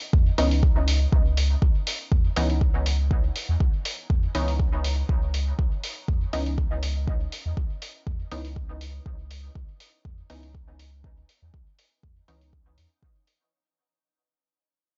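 A muted, detuned sawtooth chord stab on C#m9 opens this hypnotic, deep dub techno excerpt at 121 BPM in C# minor, its filtered plucks colored by chorus, phaser, dub echo and sidechain pumping. A round, mellow sub bass with tube saturation and its own pumping joins at 0.1 s alongside an up-front, layered electronic kick, while a muffled, pitched-down, tape-warm hi-hat enters at 0.4 s with a light swing on the 16ths. The dry, gritty recording stays dark up top and fades out across its 13.5 seconds.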